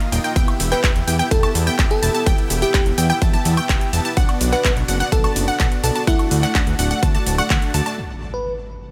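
A straight 4/4 pulse at 126 BPM drives this anthemic, uplifting festival progressive house drop, where a punchy, up-front electronic kick and a big-room dance kit of metallic hats, handclaps, ride, shaker and woodblock anchor a fat analog bass, a huge, airy supersaw riff and bright, lush unison pluck arpeggios that pump with sidechain over Em, Bm and D, while a sparkling, bell-like FM electric piano melody enters at 0.7 s with chorus, delay and a cassette tape tint before an electronic impact lands at 8.0 s, all in a light reverb.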